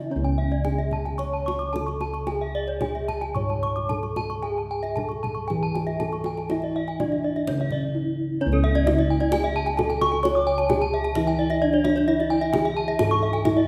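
In a straight 4/4 pulse that moves between 111 and 131 BPM, this hypnotic, brilliant fragment of Balinese gamelan in C# pelog sets a mellow, soft, airy bronze metallophone melody, padded with disc mallets, over round, beating bossed gongs that sit up front as the bass. Two more metallophones spin arpeggios: one dry, full and close-miked under a wooden mallet, the other struck with a horn mallet for a bright edge. All three metallophones shimmer with paired-tuning beats, and a tight, compressed, saturated kendang played with hard hands joins at 0.5 s. A moderate stage reverb adds a ringing halo, and after a break at 7.7 s the music moves into a new section at 8.4 s.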